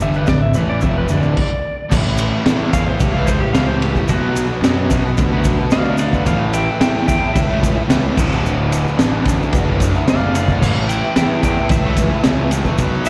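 Swaggering and rowdy, this garage rock fragment, cut from a longer piece, struts along at 110 BPM in a straight 4/4, moving from a D5 opening through A, Bm and D chords. A double-tracked fuzz guitar pounds out a bright, compressed riff up front, while a punchy fuzz-and-overdrive picked bass digs in low beneath it. The crunchy breakbeat kit sounds saturated and gritty, with dark cymbals, a high-tuned snare, a tight kick and a rolled-off top, and a grainy tube shaker sits close and dry in the background. A clean, dark lap steel carries the melody with slide and volume swells, its sound touched by slapback echo. After a brief stop at 1.4 seconds, an electric slide guitar solo comes in from 1.9 seconds to the end, and the whole band sounds like a live gig heard through the venue's PA in a small room with a recital-hall reverb.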